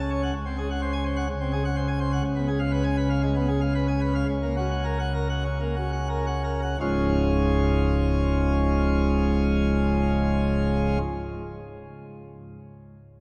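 Brilliant and majestic, this classical organ toccata excerpt gives a solo pipe organ on full plenum with mixtures, its baroque voicing and crisp chiff placed up front and ranging from deep pedal notes to bright upper lines. The pace slows from 1.3 to 6.8 seconds as the harmony moves through dominant and subdominant colours before settling on the home chord at 6.8 seconds. The organ plays until 11.0 seconds, surrounded by a cavernous cathedral reverb with a long 4.9-second decay.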